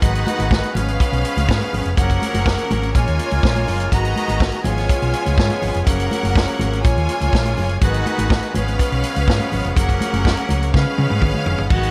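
The sound is dry, with very little reverb, giving this short disco cut from a longer piece a sultry, danceable feel at 123 BPM in a straight 4/4. An acoustic vintage drum kit sits up front with a punchy kick, a medium-tuned snare, hi-hat, crash cymbal and toms, its top end rolled off for a natural studio-room tone. Under it, a dark, round hollow-body short-scale electric bass, fingered and amped, carries the low end, while soft-handed congas with a thin, bright skin tap along in the background. An accordion holds reedy, hollow, airy sustained chords, and a bright, intense bowed string section plays a second line with rich vibrato above it. The harmony circles through G#m7, C#7/G#, F#maj7 and A#m7, turning to C#7 as the drums play a fill from 10.7 to 11.7 seconds.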